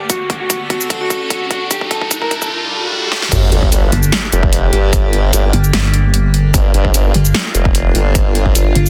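Two wobble basses dominate this heavy, chaotic dubstep excerpt in G minor at 149 BPM, played with a half-time feel. A saturated formant-sweep bass enters at 3.3 s, and a detuned pulsing pluck bass joins at 3.9 s, both with chorus and overdrive and sitting up front. Throughout, a bright, morphing wavetable pad holds chords through a phaser and its own reverb. A dark, clean, fingered electric guitar plays a brief melody with spring reverb and digital delay, and a riser, swell and sub drop drive a filter-swept build-up over a D, Cm7 and Dm progression. Punchy electronic kicks and a big-room kit with a huge snare, metallic hats, shaker and crash fill the build-up and land on a Gm impact that opens the drop. The dense, heavily limited master keeps the sound dry and forceful, and the passage is cut from a longer piece.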